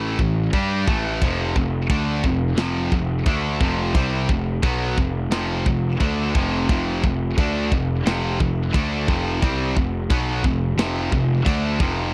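A double-tracked, high-gain guitar riff and a growly fuzz bass open this aggressive, heavy metal excerpt together, with the drum kit joining at 0.2 seconds. At a straight 88 BPM in 4/4, the riff moves from an A5 chord to F5 at 1.2 seconds, the guitar ranging from F2 to G4 while the overdriven bass sits between F1 and G2. The guitar is bright, distorted and picked, placed up front, and the picked bass is also forward, direct and amped with a bright fuzz edge. The acoustic kit, built on a china cymbal, tight kick and medium-tuned snare, sounds saturated and gritty, mid-forward in a studio room with a rolled-off top. The whole cut is a dry, close recording in a 1970s studio style, tuned to A4 = 438 Hz and lasting about 12.1 seconds as part of a longer piece.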